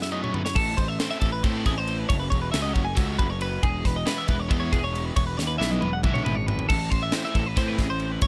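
Math rock and midwest emo in 7/8, intricate and bright, this echo-heavy excerpt opens with a drum fill and a warm twelve-string electric guitar accompaniment with tape echo sitting in the background until 0.5 seconds, while a clean, bright twelve-string traces arpeggios throughout, a double-tracked overdriven electric guitar with tape echo plays the riff, a fuzzed, punchy picked bass enters up front at 0.6 seconds, and a crisp, polished fusion kit with a high-tuned snare adds another fill at 5.4 seconds over chords moving from Amadd9 through F#m7 and Emaj7.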